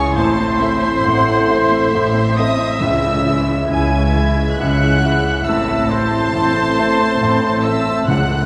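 A longing, bittersweet cinematic passage in a flowing triple metre with a loose, rubato feel opens with nearly the whole ensemble at once, sitting in a deep church reverb. High, dark-toned violins carry the melody with a soft attack and light vibrato, while a second violin line, a hollow, distant silver flute and a vintage-sounding oboe trace supporting lines beneath it. Dark, sul tasto violas and a very quiet baby grand piano with short sustain fill in the accompaniment. A mellow French horn section holds chords in the background, and floating, pure-toned cellos join intimate double basses at the bottom. Articulate calf-head timpani struck with hard mallets enter at 2.8 s as the harmony moves from A minor to C-sharp minor, then return briefly at 8.1 s. The harmony settles back on A minor before the excerpt ends.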